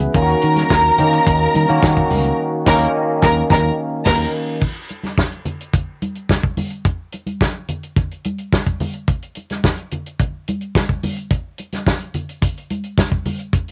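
Lush, vibrato-laden studio strings ring out over a barky, chorused tine electric piano, a round and punchy fingered bass, a dry soul drum kit with dark cymbals and cassette-tape grit, and close, thin-skinned congas in this celebratory, glamorous disco excerpt, where a band accent hits at 2.4 seconds over a D#m7 groove before strings, piano and bass fall away by 4.6 seconds, leaving drums and congas to carry on, the congas until 13.4 seconds and the drums until 13.7 seconds, in a lightly reverberant home cassette recording.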